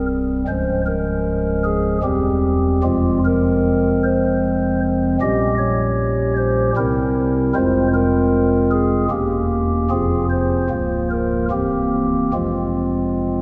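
A solo pipe organ on a stopped flute stop plays this solemn, dark chorale-style classical passage in F minor, its hollow, mellow tone touched with a soft chiff and heard up front. At 76 BPM in a rubato 3/4, the baroque voicing moves through diminished chords and a C7 before settling on F minor, reaching from deep bass notes to the upper register. A long church reverb of 3.5 seconds surrounds the organ, and the 13.4-second passage is cut from a longer piece.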